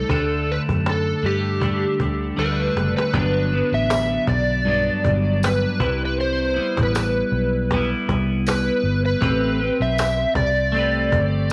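Hazy and laid-back, this indie pop and bedroom pop excerpt drifts along at 79 BPM in G major with a gentle swing, its home-recorded cassette sound softened by light studio reverb. An overdriven slide guitar carries the melody up front through analog chorus and delay, while a twangy, picked clean electric guitar wobbles beneath it with lush chorus and warbly pitch drift, and a round, foam-muted bass with transformer saturation anchors the low end. A woody, band-limited cajon keeps time and plays a fill from 2.4 to 3.1 seconds, and a jingly tambourine joins at 3.9 seconds as the chords move from Gmaj7 through Cmaj7 to Am9.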